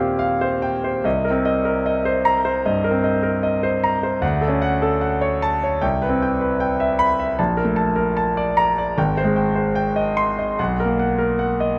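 A clear, up-front concert grand piano with deep bass and long sustain plays this hazy, serene fragment of impressionist classical solo piano at a rubato 75 BPM, drifting through a chain of mostly major-seventh chords in a moderate concert-hall reverb captured by close, detailed microphones.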